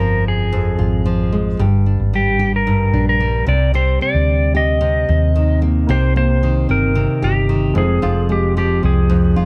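A clean, dark lap steel guitar carries the tender, reflective melody with slide, volume swells and tape echo over an up-front fingerpicked nylon-string guitar with audible finger squeak and a round, punchy hollow-body short-scale electric bass in this 112 BPM acoustic pop fragment, while a woody, slightly detuned upright piano with short sustain slips in very quietly at 5.9 seconds beneath a light reverb.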